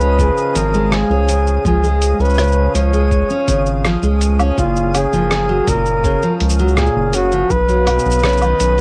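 From the opening moment, a mellow flugelhorn carries the melody up front, its jazz-style phrasing colored by light vibrato, scooped notes and a gritty, vintage sampler edge. Beneath it, a picked dreadnought acoustic guitar spins full-bodied arpeggios while a reedy, nasal harmonium breathes sustained chords in the background. A round, deep analog bass sits prominently in the mix with a dark, evolving tone, and a muffled, compressed sampler-style kit adds cabasa, hi-hat, rim click and woodblock, joined at 0.2 seconds by a thumpy electronic kick. High above, a twinkling granular texture adds sparkling, octave-up shimmer with its own reverb, while the harmony moves from Db to Gbmaj7 and then to Cbadd9 at 7.5 seconds. This pastoral, delicate folktronica excerpt has a homespun cassette character, with vinyl crackle, lossy artefacts and light reverb around the whole mix.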